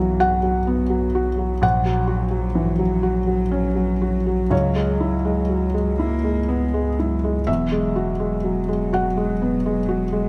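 Tender and intimate, this short neoclassical piano-and-strings excerpt drifts at a slow 41 BPM in 6/8, its rubato feel giving the phrases room to breathe. A felt-muted upright piano carries the accompaniment up front, its soft, mellow tone marked by a thin felt, short sustain and audible action noise that lends a natural, close-up character. A single cello plays the second line in a narrow range, its bowing sul tasto with a soft attack, airy bow and light vibrato. Beneath them, a punchy sub bass adds deep, sustained sine tones with a fast, pitch-drop attack. The harmony moves from Bsus2 through F#/A# and C#m7 to Eadd9, and light reverb surrounds the parts throughout the 10.3 seconds.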